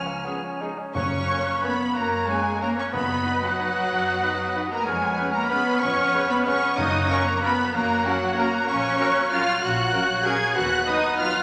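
Sweeping and festive, this short rubato orchestral ballroom waltz in 3/4 and F# major moves at 163-206 BPM, with a lush, vibrato-rich violin section singing the melody up front over a second violin line, airy flutes, a clear oboe, a present bassoon, distant viola and cello sections, a lush double bass section, mellow French horns holding chords, very quiet trumpet stabs, and round soft-mallet timpani heard from 0.9 to 3.4 seconds and again near 6.8 seconds, all set in a wet scoring-stage reverb.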